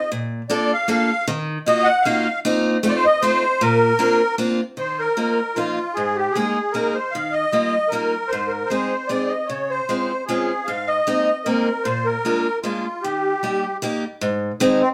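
A moderate studio reverb frames a band playing live in one room, with a reedy, shimmering musette accordion carrying the melody up front beside a bright, picked steel-string acoustic guitar whose fresh strings and finger squeak come through clearly. This nostalgic, whirling musette tune moves at 153 BPM in 3/4 with a light swing on the eighths, opening in Bb major before shifting to Eb major at 4.8 s. The harmony is rich with added ninths, suspended chords and major sevenths, and this short cut from a longer piece runs to 14.9 s.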